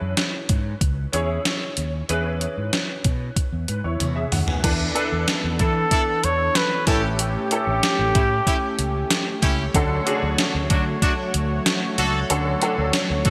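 An overdriven, sampler-style digital drum machine sits up front in this nostalgic, uplifting 1980s-style pop piece, driving a straight 4/4 feel with a thumpy kick, a gated-reverb snare, hi-hat, tambourine, toms and crash cymbal, plus a drum fill from 4.0 to 4.6 s. Beneath it, a fretless electric bass with a lush chorus and a warm, amped tone plays through the whole passage, alongside a clear, polished baby grand piano whose short-sustain accompaniment carries an ensemble chorus. The harmony moves from E6 to E7sus4 as a brassy, detuned sawtooth pad with a soft attack, an airy noise layer, vibrato and a moving notch enters at 4.6 s. At 5.6 s a close-miked flugelhorn takes the melody with light vibrato and a digital delay, while a punchy horn section adds pop-style stabs as the chords shift to A7 and then Dmaj7. A lush hall reverb and bright digital production frame this passage, which is cut from a longer piece.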